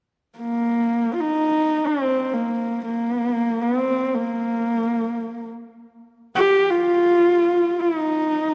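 Mongolian folk in free time and the Bb zhi mode, this short cut from a longer piece carries a proud, galloping mood through a single dark, husky horsehead fiddle, bowed on horsehair strings and placed close and up front, singing expressively between Bb3 and G4 with vibrato and portamento from 0.4 to 8.5 s, set in a moderate concert hall reverb with lossy compression artefacts.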